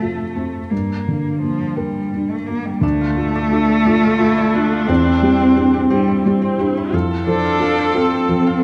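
Melancholic and fragile, this brief neoclassical excerpt in D minor drifts at a rubato 58 BPM in 6/8, with a muted upright piano, its thick felt and audible action noise up front, supporting an expressive bowed cello carrying the second line with vibrato, portamento and tape echo, before a bright, ringing harp enters with echoed arpeggios at 2.8 seconds and a rich, distant viola joins at 3.9 seconds, all bathed in a wet echo-chamber reverb.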